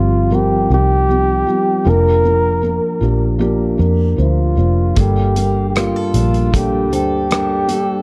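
A breathy, close-miked flugelhorn carries the melody with vibrato and a touch of delay from the start, over a felt-muted upright piano with audible action noise and a round, foam-muted fingered electric bass, setting a heartbroken, longing mood in this slow pop ballad fragment. At 5.0 s a full-bodied picked steel-string acoustic guitar adds quiet arpeggios with finger squeak, while a modern drum kit enters with hi-hat, a tight kick and rim clicks. The production is dark and warm, with light reverb and small room ambience, as the chords move from Fsus2 through Bb/F to Gmadd9.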